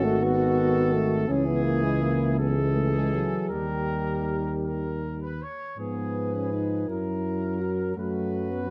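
Heard through close, detailed microphones with a light reverb, this brief excerpt from a longer classical piece for brass band has a solemn, melancholic, hymn-like character. It moves slowly at 54 beats per minute in a flexible, rubato 6/8, and all five parts sound together from the opening to its close at 8.7 seconds. A mellow trumpet section carries the melody with a soft attack, a smooth top and light vibrato, while a tight French horn section shapes a second line just beneath it. A close-miked euphonium and a distant, roomy trombone in the background fill out the accompaniment, both with a touch of vibrato. Up front, a dark tuba anchors the bass, and the harmony drifts from C sharp minor through D sharp and G sharp minor six to F sharp, settling on a B5 over F sharp.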